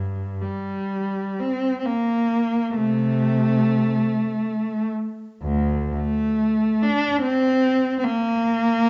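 A dark, warm recording set in a moderate recital hall reverb carries a single bowed cello, rich and smooth, with vibrato across its range from D2 to D4. This brief excerpt of a free, expressive classical piece for unaccompanied cello unfolds in free time, tuned to A4 = 438 Hz. Over its 8.9 seconds the solo line sounds mournful and yearning, its even tone sitting up front in the sound.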